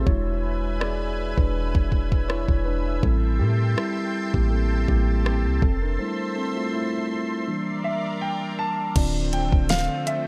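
A mellow, clean tine electric piano leads this longing, late-night contemporary R&B excerpt at 81 BPM in D minor with a light 16th-note swing, over a lush, detuned sawtooth pad with chorus and sidechain pumping, a deep, boomy 808-style bass and a produced electronic drum kit with soft kick and fat snare, with a break at 6.0 seconds before a polished grand piano with long sustain takes the melody at 7.8 seconds, the whole mix set in digital ambience.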